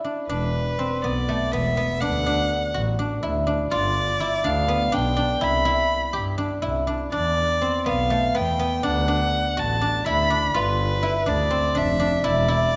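A silvery, ringing guzheng opens alone with fingerpicked arpeggios before a bowed violin, expressive with vibrato and gliding portamento, and a rich, focused bowed double bass enter at 0.3 seconds, carrying this urgent, restless contemporary chamber piece in 7/8 through a moderate concert hall reverb, all three parts sitting up front in a passage cut from a longer work.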